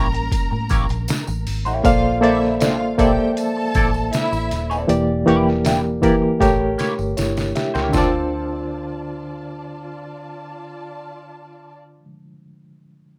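This rough home-demo mix carries a light reverb around a lush 1970s-style soul groove in D minor, smooth and silky at a relaxed 79 BPM in 4/4, cut from a longer piece. Up front, a barky, reedy electric piano plays the accompaniment through its built-in speakers, lightly overdriven with a medium tremolo, while a bright, clean semi-hollow electric guitar picks a riff through wah and a subtle chorus. Beneath them, a dark, foam-muted fingered electric bass gives a round, punchy bottom, and a pitched-down, muffled trip hop sampler-style kit supplies a thumpy kick, a medium-tuned snare and hi-hat with a compressed, tape-warm character. A distant studio string section adds a lush second line with vibrato and portamento, and a jingly tambourine sits in the background. The harmony moves from A7b9 through Bbmaj9#11 and Em7b5, a drum fill runs from 6.4 to 7.9 seconds, and the drums stop at 8.1 seconds as the music settles on Dm7, with the electric piano lasting until 13.2 seconds.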